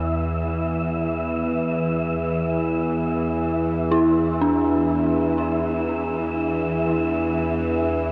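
Floating in free time, this dark ambient drone, cut from a longer piece and tuned slightly below standard pitch at A4 = 438 Hz, feels cavernous and unsettling across its 8.1 seconds. Up front sits a bowed-like drone in the low register, a tense, string-like sawtooth layer with ring modulation, a noise layer, vibrato and a slow attack that lets it hang, sustained, beneath everything. Over it, a dark detuned synth bell plays arpeggios in a narrow range, its eerie, inharmonic FM tone striking quickly and then decaying, warbling, vintage and mellow in character, coloured by chorus and tape echo. Higher still and quieter, a wind-like tuned noise texture breathes on a single high pitch, an airy sine layer that fades in slowly and lingers with a long release. A huge, wet reverb with a 7.5-second tail wraps the whole piece, turning the space into a deep, echoing chamber.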